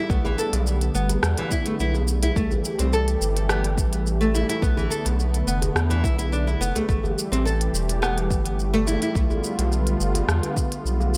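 Organic downtempo at 106 BPM in a straight 4/4, this short cut from a longer piece has a hypnotic, mystical mood. A smooth, detuned sawtooth pad holds mellow sustained chords with chorus and sidechain pumping, while an up-front nylon-string guitar plays fingerpicked arpeggios, with audible finger squeak, subtle chorus and delay, until it drops out at 9.1 seconds. Beneath them sits a round, dark analog bass with a fast attack and tube saturation, pumping with the sidechain and sitting prominently in the mix. A deep electronic kick and an electronic kit of crisp hi-hats, rim click and shaker carry a small room ambience, the kit adding gated reverb, while a tight, cracking djembe played with soft hands stays distant in the background. The harmony moves through Gadd9, C6, Bm7b5 and A7(no3) to G9, all framed by light reverb and a bright 1980s-style digital production.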